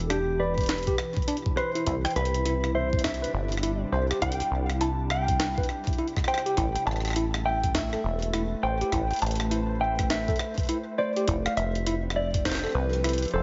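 Lightly reverberant and soft at the top end, this short cut from a longer IDM piece moves at 102 BPM in 4/4 on swung 16ths, its glitchy, intricate mood built over Em7, Cmaj7, Am7 and Fmaj7. A dark, clean electric guitar carries the melody through digital delay while a glassy FM pad holds ethereal chords with ensemble chorus. Up front, a rubbery, saturated acid bass with a resonant filter sweep sits beneath an overdriven tine electric piano playing gritty arpeggios through a combo amp and delay. Pitched-up, tape-warm jungle sampler drums bring hi-hat, rim click and a medium-tuned snare with digital delay, over a thumpy, compressed electronic kick that enters at 0.6 seconds.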